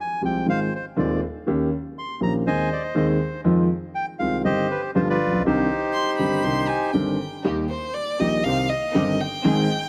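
A reedy, bright bandoneon carries the melody up front in this tense, sultry tango in C minor, moving at 120 BPM in 4/4 with a rubato feel. Beneath it, a concert grand piano supplies the accompaniment with a deep bass, a somewhat boxy tone and long sustain, settling through chords such as Ab/Eb, Fm7 and G7 before landing on Cmadd9. A warm violin enters at 5.9 seconds as a second line, expressive and bowed with vibrato, portamento, a soft attack and a smooth top. The bandoneon finishes at 6.9 seconds, and from 7.4 seconds the violin takes a solo over Eb and Cm harmony. In this closing stretch a muted string section adds dark, veiled stabs played con sordino in the background, all within a light reverb, before the passage breaks off as part of a longer piece.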